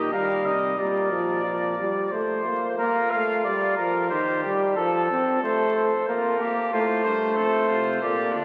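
A cornet, trumpet, trombone and bass trombone open together in a contemplative yet driving classical canzona for brass ensemble, moving at 91 BPM in a straight 3/4 and tuned slightly low at A4 = 439 Hz. The warm, punchy cornet carries the melody up front with a light vibrato, while the trumpet sings a second line with vibrato from a distant, roomy position. The trombone holds the accompaniment with a clear tone, also up front yet roomy. The mellow bass trombone sits in the background on the bass, dropping out at 2.7 seconds and returning at 6.7 seconds. The harmony moves through Eb, Fsus4/Bb and F, then Bb, Cm/Eb and F before settling on Bb5 and F. Everything is bathed in a long cathedral reverb and heard through the crackle of a very old 78 rpm record, in a brief passage cut from a longer piece.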